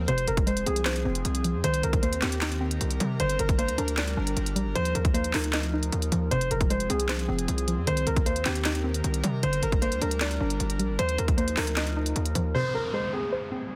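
A distorted 808-style bass sits up front in this wistful, dreamy trap excerpt at 154 BPM in a half-time feel, heavy and aggressive beneath a hard-clipped kick, sharp snare, crisp hats and handclaps from the trap drum kit. A dark, worn grand piano carries the melody with audible action noise, filtered and touched by digital delay, over a soft, round pluck and an airy, breathy pad in the background as the chords cycle through Fm, Cm7, Gm and Ebsus2. The mix is dry, dense and heavily limited, and at 12.5 s the bass and pad stop while a downlifter closes out the final seconds.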